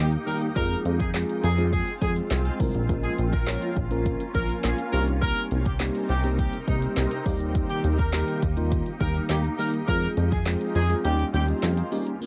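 Bittersweet yet confident, this dance-pop excerpt moves at 103 BPM in a straight 4/4, sitting in a drop built on a cycle of Eb, Fm, Bbm and Cm7 that closes on Eb7. A clear horn section with light vibrato carries the melody, while a mellow tine electric piano supplies the accompaniment, softened by a low-pass filter and pumping with the sidechain. Beneath them, a granular cloud pad holds sustained chords with a blurred, warbling, detuned character and its own reverb. A punchy, funky analog bass with a plucky filtered attack sits up front alongside a deep house drum kit of deep kick, woody snare, dark hi-hats and handclaps. The kick drops out at 11.0 seconds, and a brief downlifter sounds at 12.2 seconds just before the cut. The whole mix has the dulled top end of a home cassette recording in a modest booth ambience, lending the horns, piano, pad and drums a vintage tape coloring.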